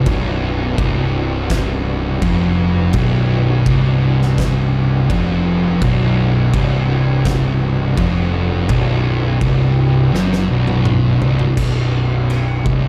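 Hypnotic and brooding, this short excerpt of stoner and doom metal moves at a slow 83 BPM in 4/4, centred on a B minor chord. Two thick fuzz guitars play a dark, distorted riff deep in the low register, sitting back in the mix, while a picked electric bass adds a bright, punchy, overdriven growl with tube saturation beneath them. An oversized, low-tuned acoustic drum kit drives the piece with a punchy kick, fat snare, toms and dark crash cymbals, its gritty, saturated sound filling a big, pumping room. Behind it all, a tonewheel organ holds full, lightly overdriven sustained chords through a slow rotary speaker and chorus vibrato. A drum fill from 10.1 to 11.6 seconds leads into a brief new section that runs to the end at 12.9 seconds, and the whole production is dark with light reverb and a small room ambience.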